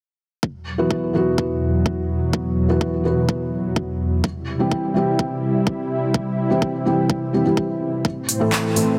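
A thick, detuned sawtooth pad with chorus and sidechain pumping carries this anthemic, euphoric fragment of festival progressive house, holding sustained chords from Esus2 to C to Am from 0.4 s while a filter sweeps across it. A punchy, layered electronic kick sits up front from the start, and from 0.8 s a felt-muted upright piano adds mellow, boxy accompaniment with audible action noise, pumping and delay. At 8.3 s a big-room dance kit joins with handclaps and crisp hi-hats, all set in a lush digital hall reverb.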